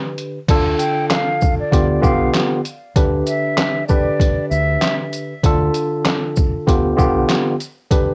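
Gritty and dark, this boom-bap hip-hop fragment, cut from a longer piece, moves at 97 BPM in 4/4 with a light 16th-note swing, sitting in D dorian over a Dm, G7 and Em7/D progression. A worn, slightly out-of-tune tine electric piano opens it at 0.0 seconds and stays up front, lightly overdriven and heard as if through built-in speakers, filtered and coloured by cassette tape. The trip hop sampler-style drum kit is compressed, pitched down and muffled, with a thumpy kick, a medium-tuned snare, hi-hat, shaker, handclaps and crash cymbal, all carrying 12-bit grit and overdrive as though re-recorded in a small room. Beneath them a deep dub fingered electric bass sits round and dark in the background. A breathy, close-miked concert flute with a straight tone and soft attack carries the melody from 0.8 to 5.0 seconds, filtered and taped with tape echo. The whole mix has the intimacy of a home cassette recording with light reverb.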